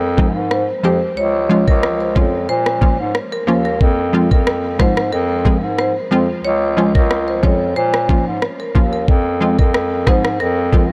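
Dancehall in F minor at 91 BPM, sultry and bouncy, this short cut from a longer piece sets a warm marimba melody with analog delay over a clear, soft-attacked bass clarinet holding the low line up front. A hollow, detuned square-wave pluck with chorus and sidechain pumping joins at 0.2 seconds alongside an electronic island pop kit of knocking kick and rim click. The chords cycle through Fm, Db and Bbm, all bathed in a huge, dreamy ambient reverb.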